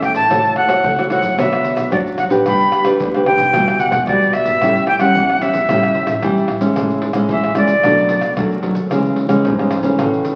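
An airy, reedy jazz flute leads this lively, playful samba-and-choro excerpt up front with vibrato and a soft attack, moving into a solo at 6.8 s over thumb-plucked classical nylon-string guitar, a nasal, boxy bowed double bass in the background, and a close tube shaker, pandeiro, tamborim and tight surdo, all steeped in a large studio reverb and the crackle of a very old 78 rpm record.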